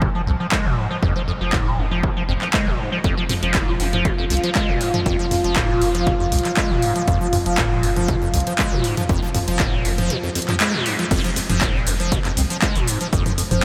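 A punchy, overdriven electronic kick and a tape-warm analog drum machine of snare, handclaps, hi-hat, shaker, toms and crash cymbal drive this raw, hypnotic acid house cut at 119 BPM in F minor, where a squelchy, resonant acid bass riff with phaser, chorus and delay sits up front over a round sine sub bass pumping with sidechain, a dark, detuned pad with ring modulation hangs in from 3.0 s to 11.1 s, and a band accent at 10.6 s leads into the drop, the mix soaked in a dreamy cathedral reverb.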